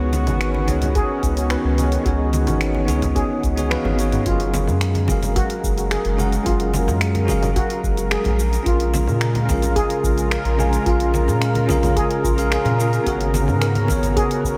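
Sunset chillout with a relaxed, warm mood, moving at an easy straight pulse in four and cut from a longer piece. A bell-like tine electric piano carries the accompaniment with tape echo, while a lush, detuned unison pad holds thick sustained chords through chorus, and a round analog bass sits up front, deep and dark. A smooth R&B drum kit with warm hats, finger snaps, shaker and toms enters at 0.1 seconds, joined by very quiet, close congas struck with hard hands and a dry, overdriven electronic kick from 0.7 seconds. A shimmering steel pan plays arpeggios in the background from 1.0 seconds, its metallic tone trailed by tape echo. After a drum fill leads into the second section at 4.3 seconds, the harmony drifts through lush extended chords such as F#maj9 and A#m7, and the whole dreamy mix is soaked in a moderate cathedral reverb.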